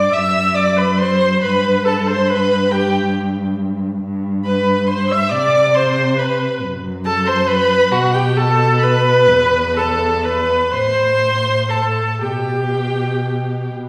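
A muted string quartet opens together at the very start of this slow, yearning romantic movement, a melancholic passage cut from a longer piece. It moves in a rubato 6/8 at roughly 38-47 BPM counted in dotted quarters, tuned to A4 = 443 Hz. The first violin carries the melody high in its range, sounding distant and veiled through its vibrato, while the second violin's line sits close and present an octave lower. The viola, with light vibrato, fills in the accompaniment from further off, and the bowed cello holds the bass up front with a smooth top. All four players use con sordino, giving the ensemble a dark hue. The harmony drifts through D13/F#, G, Csus2 and F#madd11 to Esus4, Am and G/B, heard from further back on a scoring stage with a reverberant 1.5-second tail, until the cello lets go at 13.9 seconds.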